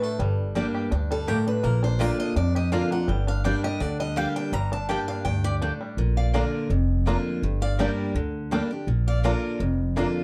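A dark, warm production with light reverb frames this short bluegrass excerpt, driving and lonesome in G minor at 166 BPM in a straight 4/4. Two picked steel-string acoustic guitars open together: a bright, boxy parlour guitar carries the melody with audible finger squeak, while a full-bodied dreadnought sits up front with the accompaniment. A twangy, percussive banjo played with fingerpicks plays arpeggios, and a thumpy, woody upright bass with gut strings, plucked and placed up front, enters at 0.2 seconds. A mandolin with double strings adds picked stabs from 0.6 seconds as the harmony moves between G minor and B-flat. At 6.2 seconds a clear, nasal fiddle joins in the background, a single distant bowed player with light vibrato and an earthy edge, tracing a second line until 9.6 seconds.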